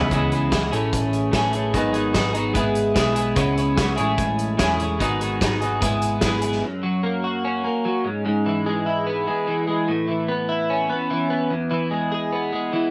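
A clean, compressed twelve-string electric guitar sits up front with a double-tracked riff in this moody, cool indie rock excerpt, moving through C#m7, Amaj7, G#m7 and E/G# changes in a straight four. A dark, round hollow-body bass and a roomy acoustic kit with a punchy kick and rolled-off top support it in light reverb and small-room ambience until 6.6 seconds. From there the warm guitar carries on alone over F#, E/G#, Aadd9 and E until the cut at 12.9 seconds.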